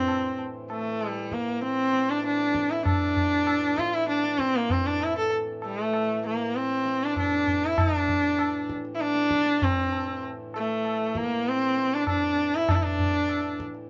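Longing and meditative, this short Hindustani classical passage in raga bhairavi on A moves at 98 BPM in a straight 4/4. A clear, focused bowed sarangi carries the melody up front, gliding with portamento and light vibrato as its sympathetic strings resonate, while a reedy, breathing hand-pumped harmonium holds a low drone in the background. A low-tuned acoustic tabla with a short ring keeps time from 0.1 seconds, and the trio plays live together in one room with a moderate studio ambience.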